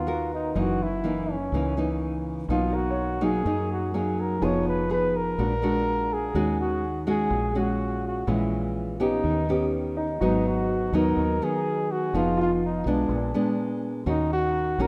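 Set in a lush hall reverb with a rough home-demo feel, this wistful, smooth bossa nova excerpt features a mellow flugelhorn with light vibrato up front over fingerpicked nylon-string guitar and a round, punchy, foam-muted electric bass, while a clear, polished baby grand piano sits in the background from 2.7 to 5.4 seconds and again from 10.0 seconds as the music moves into a new key at 10.2 seconds.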